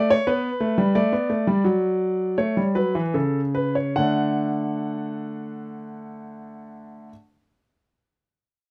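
Elegant and stately, this brief passage, cut from a longer piece, is a baroque-style two-part invention in D major for solo concert grand piano, set in a straight 4/4 at 73 to 91 BPM and tuned to A4 = 441 Hz. The piano plays alone from 0.0 to 7.1 seconds, ranging from C#3 up to F#5, and its tone is warm, intimate and smooth, with a deep bass, long sustain and a vintage character. The instrument sits up front, and close, detailed microphones pick up audible action noise. The opening phrase slows down through its first 4.0 seconds while the harmony moves from G to D to A. A second phrase begins at 4.0 seconds on a D chord, heard through a light reverb.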